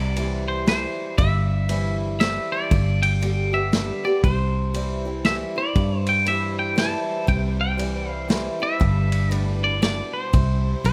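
This honky-tonk and classic country excerpt moves in a swinging three-beat waltz lilt with a heartfelt, sunny mood. A twangy, clean electric guitar carries the melody up front, picked and compressed, with a touch of spring reverb. Underneath, an old ladder-braced acoustic guitar supplies boxy picked accompaniment, while a dark, round, foam-muted fingered electric bass and a vintage drum kit hold the groove. The kit has a punchy kick, a medium-tuned snare and dark ride cymbals with a rolled-off top. From 5.8 seconds a clear, focused chamber violin section adds distant bowed chords with vibrato in the background, and at 10.9 seconds a pedal steel guitar played with fingerpicks slides in with volume swells as the passage is cut off. The sound is dry and intimate, captured by close, detailed microphones.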